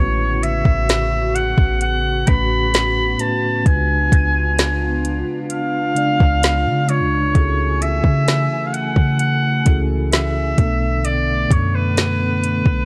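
Dreamy and romantic, this contemporary R&B excerpt sets a clear, lightly vibrato oboe melody with a delay trail over mellow tine electric piano, a glassy FM pad softened by ensemble chorus and its own reverb, a deep, boomy 808-style bass, and an up-front produced drum kit of soft kick, woody snare and metallic hats entering at 0.4 seconds, all moving through A69, C#7b9, F#m9/C# and Bm7 chords in a digital ambience.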